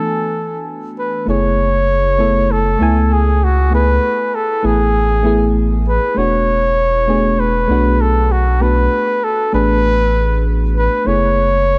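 A light studio reverb gives this sunset chillout fragment, cut from a longer piece, a smooth and warm sound. It moves at 98 BPM in 4/4 with a 16th-note swing, sitting in F# minor and tuned to A4 = 439 Hz. A mellow FM electric piano, vintage and warbling with a dark tone, a faint noise layer and a chorus effect, plays the accompaniment from the start. Over it a soft-attacked flugelhorn carries the melody in a jazz style, up front, with vibrato, scooped notes and a tape echo. A deep, round sine sub bass enters at 1.3 seconds and stays close and present through to 11.8 seconds. The harmony rests mostly on F#m11 and E7sus4, creating a smooth, warm mood.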